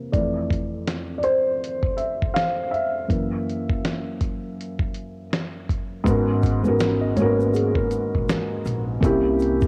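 Lo-fi hip hop at 81 BPM in 4/4 with a swung sixteenth feel, reflective and melancholic, this piece has the character of a home recording on cassette with moderate spring reverb. A soft, dark felt-muted upright piano sits up front with audible action noise and a filter sweep through the opening 6.1 seconds over Fmaj7 and F#7, joined almost at once by a gritty, compressed sampler-style drum kit with a thumpy kick, medium-tuned snare and hi-hat carrying vintage 12-bit grain and tape colour. At 6.1 seconds the harmony moves to G#m11 as a very quiet, woody pizzicato upright bass and a grainy, bright egg shaker in the background enter, and a clean tine electric piano with analog delay adds a brief second line from 7.0 seconds before the passage closes on C7b9.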